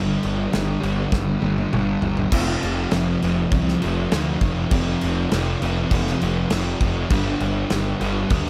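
A double-tracked fuzz guitar riff and a dark, round overdriven bass open this hazy, dreamy shoegaze and dream pop rock excerpt at 100 BPM in a straight 4/4. A loose acoustic drum kit comes in at 0.2 seconds with a punchy kick, medium-tuned snare, toms and dark crash cymbals in a small, pumping room, playing a fill from 1.1 to 2.3 seconds. The compressed, distorted guitar carries a subtle chorus and sits up front with the bass and drums, moving from G5 to F5 and back to G5 at 7.1 seconds before the cut from a longer piece.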